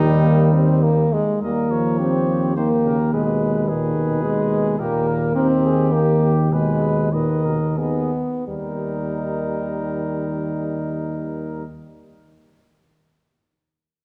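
In a rubato three-beat lilt that slows between 4.0 and 8.5 seconds, this grave, solemn classical brass quintet passage, cut from a longer piece, sets a clear, soft-edged cornet melody over a dark, distant trumpet second line, with an up-front, vintage-toned French horn and a close-miked trombone with light vibrato as the warm accompaniment, a mellow tuba holding the bass, and a lush concert-hall reverb around them all.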